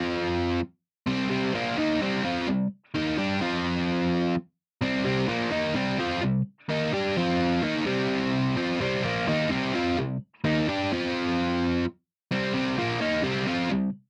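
A double-tracked, overdriven electric guitar plays alone and up front from the very start of this brooding, smoky rock excerpt, picked at 128 BPM in a straight 4/4 in C minor. Its warm tone moves between F5 and Cm chords across a range from Bb2 to G4, touched with light reverb, until it stops at 13.9 seconds. The sound is dry and close, like a 1970s studio recording.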